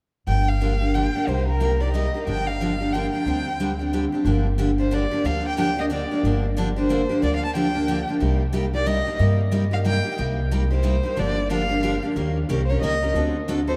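A swinging 3/4 lilt at 182 BPM drives this fiery piece of jazz manouche in G minor, cut from a longer performance. The woody, dark pizzicato upright bass and a bright, freshly strung picked steel-string guitar sit up front, carrying the chord changes from the opening at 0.3 seconds through to 13.8 seconds. A single bowed violin floats a little further back with a soft attack, expressive vibrato and sliding portamento, all wrapped in the long, wet reverb of a vast cathedral-like space.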